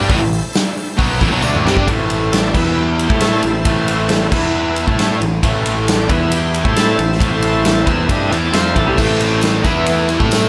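Brooding and driving, this 10.5-second classic rock excerpt in A minor at 135 BPM rides on a huge arena drum kit up front, with a punchy kick and a fill at 1.4 seconds, and on a growling picked bass with overdrive, while three overdriven guitar riffs (one biting and double-tracked, one crunchy, one from a cranked stack) and a shouting tonewheel organ with key click and slow rotary speaker fill the background, joined briefly by a jingly tambourine and, from 9.0 seconds, a very quiet full-bodied steel-string acoustic guitar, under light reverb.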